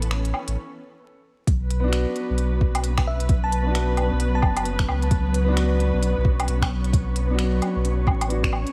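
A swung 4/4 future garage groove of finger snaps, smooth hi-hat and woodblock, all overdriven, sets a ghostly, rainy mood, with a short break before a soft, overdriven electronic kick arrives at 1.5 seconds as the harmony moves from Aadd9 to B minor. Veiled, muted strings and a deep, round sub bass pump under sidechain, joined by an intimate, woody upright piano with audible action noise and tape echo, while a grainy, flickering texture shimmers in the background. From 3.1 seconds a bell-like, sparkling FM electric piano with chorus and tremolo adds a brief melody, all under a haze of vinyl crackle and light reverb in this fragment cut from a longer piece.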